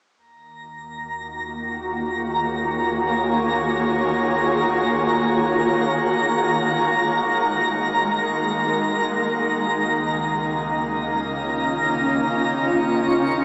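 A shimmering, ethereal pad sits up front in this serene, reflective ambient fragment, entering at 1.6 seconds with bright, detuned sustained chords that evolve slowly, carrying an octave-up shimmer, chorus and its own reverb. Alongside it, a twinkling granular texture, also up front, scatters sparkling high tones with an FM character and long, lingering releases from 0.6 seconds. In the background, an organ-like drone of detuned sine tones hums calmly beneath an ensemble chorus and reverb, while a deep, round sub bass, present from 0.2 seconds, anchors the low end with a mellow sine tone. The harmony drifts from Ebm11 through Absus2 and Dbadd9 before settling on Eb7sus2. The whole mix floats in a very wet shimmer reverb with a long tail, yet comes across with a small-speaker sound.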